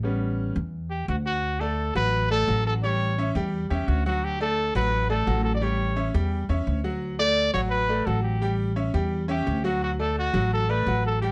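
Joyful and danceable, this salsa excerpt moves over a steady back-and-forth between A7 and D, with a brilliant grand piano providing the accompaniment and a woody, growly pizzicato upright bass up front underneath. A clear, punchy trumpet enters at 0.9 seconds to carry the melody in a vintage pop style, its notes scooped. The close, detailed sound has light reverb.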